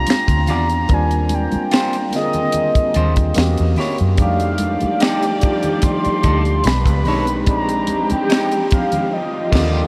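Relaxed and smooth, this short slice of neo-soul R&B cut from a longer piece moves at an unhurried 73 BPM in Eb major with a light sixteenth-note swing. A mellow, horn-like synth lead carries the melody from the first moment, its round sawtooth tone softened by a gentle attack, vibrato, a warbling chorus and analog delay. Beneath it, a gritty, barky tine electric piano pushed through a combo amp comps the harmony, while a dark, foam-muted fingered bass sits up front with a punchy, rounded tone. A tight funk kit with bright cymbals, a high-tuned snare, finger snaps and a dry kick drives the groove, joined by very quiet, thick-skinned congas and, in the background, a picked electric guitar at the edge of break-up adding a second line through its own analog delay. Expressive bowed strings enter at 4.2 seconds with sustained, gliding chords as the harmony drifts through rich extended voicings like F13 and B9, before the whole band lands an accent on Ebmaj9 at 9.1 seconds. 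The mix is dreamy and soaked in a huge ambient reverb.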